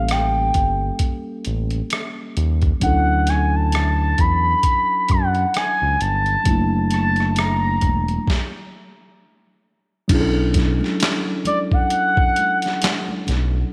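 A slow 4/4 groove with swung sixteenths carries this sultry, introspective neo-soul R&B excerpt, built on a gritty, compressed boom bap sampler-style kit with a thumpy kick, medium-tuned snare, hi-hat, rim click, handclaps and crash, under a smooth, up-front sawtooth-and-triangle synth bass. A mellow, clean tine electric piano plays through chords such as A7b9 and Dmaj7, while an expressive portamento lead sings high with vibrato, chorus and slapback echo. After a stop from 8.3 to 10.1 seconds, the music moves onto Bm11 as bright, very quiet congas join, all set in a moderate echo-chamber reverb.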